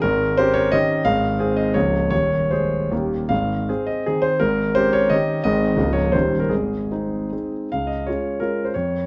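Graceful and rustic, this brief excerpt of a romantic triple-time dance with dotted rhythms and a free, rubato feel is carried by a solo concert grand piano, intimate and up front with deep bass and audible action noise, set in a moderate studio reverb as its harmony circles between Ab and Eb7 before turning to Db at 7.7 seconds.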